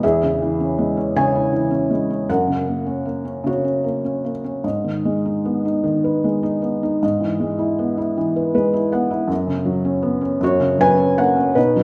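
A felt-muted upright piano plays alone, soft, mellow and intimate with audible action noise and sitting up front, in this peaceful, lyrical classical fragment cut from a longer piece, moving in a slow, rubato 6/8 at 52 BPM with uneven beats, tuned to A4 = 436 Hz, ranging from E2 to G#5 through chords from C#m/E to a closing F#sus4 and F#, with a brief fill at 8.2 seconds, all bathed in moderate scoring-stage reverb.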